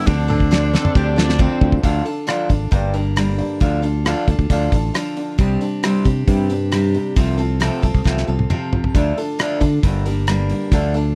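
A cloth-damped, thuddy drum kit sits up front with a fat snare and tight kick, opening with a fill that runs to 1.8 seconds, while a bright, growly fingered electric bass anchors this reflective, dusty folk rock and heartland rock excerpt in D minor at 135 BPM. A raspy tenor saxophone line with vibrato sounds only briefly at the start, and a dark, overdriven slide guitar with slapback echo slips in behind it from 0.7 to 1.7 seconds. Throughout, a picked steel-string acoustic guitar and a twangy, slightly broken-up electric guitar riff through a small old amp fill out the Dm, Gm, Csus2 and F/C changes in a dry, close 1970s-style studio sound.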